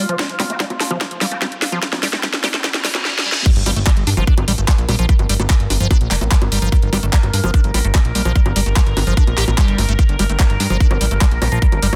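A resonant drone with shifting overtones and a squelchy, phased acid bass riff open this psychedelic trance fragment together, the drone holding sustained chords under chorus and its own reverb while both pump against the kick. It runs at a driving 147 BPM in G minor, and as the garage kit and an up-front, overdriven electronic kick come in, a build-up gathers with drum fills, filter sweeps on the acid line and a faint nasal wobble bass that sounds only from 0.5 to 3.0 seconds. A very quiet riser and reverse cymbal lead into the drop at 3.5 seconds, where an impact lands, and moments later a fat, detuned sawtooth bass enters underneath. From there the kit's cracking snare, handclaps, hi-hat, crash and bongos drive forward with overdrive, while the acid bass keeps its tape echo and bright, saturated bite. The sound is dry, dense and heavily limited, with a psychedelic, driving energy.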